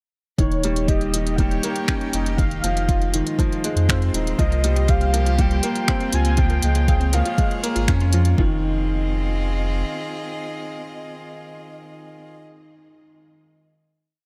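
Intimate and hypnotic, this short piano-and-strings electronica piece moves at 120 BPM in a straight 4/4 in F minor, opening directly into a drop over a cycle of Eb7, Fm7, C7sus4 and Db6. A deep, overdriven four-on-the-floor kick and a restrained, tape-warm kit of crisp closed hats and finger snaps drive the groove, while a round sine sub bass sits up front with long gliding notes and sidechain pumping. Above it, a felt-muted upright piano turns a mellow eight-step arpeggiated riff through tape echo, and a dark, woody string quartet, one bowed player per line with vibrato, holds slowly shifting chords that also pump. A velvety sawtooth lead with chorus, portamento and tape echo sings motif-based phrases, joined at 4.4 seconds by a nasal, detuned analog pluck tucked in the background, its sixteen-step sequence coloured by chorus, phaser and echo. At 8.4 seconds the music settles onto a closing Fm7, and the piano riff carries on longest, ringing out in the digital ambience until 14.3 seconds.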